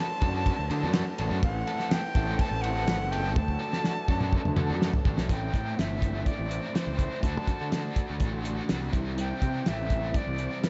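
Psychedelic rock with a hypnotic, trippy mood, this section of a longer piece moves in a straight 4/4 over chords that shift among D, Am, Am7 and C. A breathy, bright jazz flute carries the melody throughout, its tongued, reedy tone shaded by vibrato and a diffuse ambient delay. A biting overdriven guitar plays a double-tracked, picked riff treated with harmonic tremolo. Beneath them, a fuzzy, overdriven picked electric bass sits up front, and a cloth-damped, thuddy acoustic kit brings a fat snare, tight kick, dark cymbals and gritty saturation, with a drum fill from 3.4 seconds. In the opening half, a very quiet vintage combo organ holds clean sustained chords with light vibrato while a pedal harmonium breathes a mid-forward drone, and both fall away near 5.3 seconds, leaving the band in a small room with light reverb.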